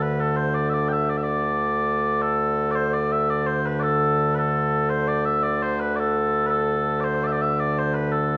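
A mellow, sweet tone from a set of small bagpipes sits up front in a recital hall, wrapped in a moderate reverb that lingers for about 1.3 seconds. This is a short medieval excerpt in 6/8 with a straight feel, carrying a mysterious, ancient mood. The pipes play alone and continuously from start to finish, spanning a range from D2 up to G5. An opening passage gives way at 2.2 seconds to a second section that runs to the end at 8.4 seconds. The fragment is cut from a longer piece.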